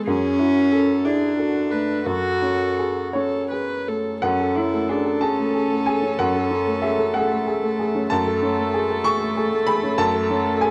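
A rubato 6/8 pulse drifting between 54 and 64 BPM carries this reflective, fragile neoclassical excerpt in F# minor, where a woody, up-front upright piano spans the accompaniment from low to high, a single viola adds intimate, airy sul tasto bowing with light vibrato, a clear, floating cello enters at 0.1 s as a pure second line played sul tasto, and the music moves into a new section at 4.2 s, all captured in a dry, close 1970s-style studio sound with light reverb.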